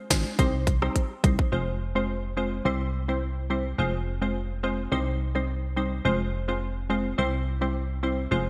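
A glassy wavetable pluck, a round FM bass and an overdriven island pop drum kit all start together at 0.1 seconds in this sultry, bouncy dancehall cut in F minor, taken from a longer piece. At 106 BPM in a straight 4/4, the electronic kit brings a tight kick, sharp snare, rim click and metallic hats, sitting up front with gated reverb and closing with a fill from 1.0 to 1.5 seconds before it stops. From 1.5 seconds the pluck and bass carry on alone. The crystalline, detuned pluck has a fast attack, a filter sweep, chorus and sidechain pumping, while the punchy bass sits low with a quick, decaying, mellow tone. The harmony moves between C minor, F minor and C major. A lush hall reverb and bright 1980s-style digital production give the sound a gleaming, spacious sheen.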